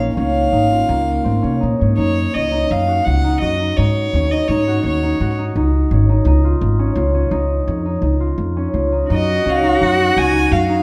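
Ringing, thumb-plucked concert harp arpeggios and a woody, thumpy pizzicato upright bass open this restless, hypnotic chamber excerpt in 5/4 at 168 BPM, with a pure, floating solo violin melody entering at 0.2 s, dropping out at 5.3 s and returning at 9.1 s alongside a distant, expressive cello line rich with vibrato and portamento, all set in a moderate recital-hall reverb.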